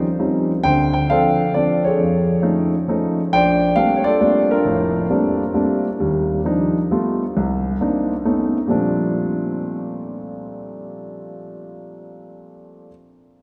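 A dark baby grand piano opens this short jazz fragment alone and carries it to the close at 12.9 seconds, its mellow tone sitting up front. The feel is relaxed and swinging, a lilting three-beat waltz with eighth notes pushed into a loose swing. The harmony moves through rich extended chords, starting on Eb13 and Dm7, passing an F7alt, and settling on Bbmaj13. A brief second passage from 6.0 seconds colours the line with Ebmaj9, G9, Cm9 and B9 before returning to Bbmaj13 at 8.7 seconds. The playing ranges from deep bass notes up into the upper middle of the keyboard, with a smooth, vintage character. Long cathedral reverb surrounds the instrument, giving the sound the spacious echo of a church or concert hall.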